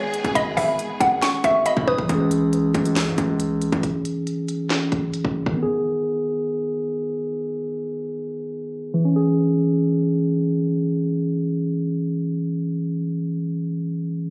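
A half-time trap groove in 4/4 drives this brooding, menacing hip hop fragment, its up-front electronic kit pairing a hard-clipped kick and sharp snare with crisp hi-hats, handclaps and rim clicks until the drums drop out at 5.6 seconds. Beneath them, a distorted 808-style bass hits heavy and saturated, its aggressive sine tone carrying a noise layer with a fast attack and decaying tail. The opening moments stack several layers: a hollow, bouncy square-wave pluck carries the melody through chorus, delay and a low-pass filter, while a pure FM synth bell adds a gentle high second line with chorus, phaser and delay, and a lush bowed string section holds sustained chords with vibrato. A clean, mellow tine electric piano provides accompaniment from the start and remains until 14.3 seconds. The harmony moves between G#m and C#m, and a filter sweep runs from 2.1 to 9.0 seconds, all heard through a compressed, phone-in-the-room capture with light club reverb.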